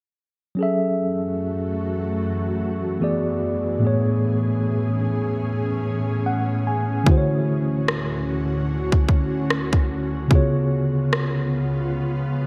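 A mellow tine electric piano sits up front through built-in speakers, carrying the accompaniment of this late-night, longing contemporary R&B excerpt at 74 BPM in F# minor, with a brief fill at 5.8 seconds. Beneath it an ethereal, airy pad of detuned sawtooth and triangle voices with a sub octave, ensemble chorus and slow attack holds sustained chords through F#m7, E7, Amaj7, Dmaj7 and C#7. At 7.1 seconds a trap drum kit of hard-clipped kick and rim click with gated reverb enters, sitting up front, framed by a bright, 1980s-style digital production and a moderate plate reverb.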